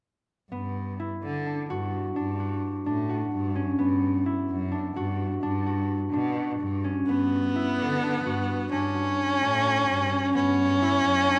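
This contemporary chamber piece, cut from a longer work, moves in an uneven 7/8 at 257 eighth-note beats per minute with a straight feel, and its G lydian colour gives it a playful, hopeful air. A concert harp sits up front from 0.5 seconds, its mellow, ringing fingerpicked arpeggios carrying harmonies that drift from Gmaj7 through Dmaj7/G and Bmadd11 to Gmaj7#11. Beneath it a single bowed cello holds the bass, warm and distant, shaping its line with vibrato and expressive portamento. At 7.1 seconds a solo viola joins close and up front as a second line, its rich, biting, intense tone edged with an airy bow and vibrato. Light reverb surrounds the trio until the passage settles on Bsus2 and ends at 11.4 seconds.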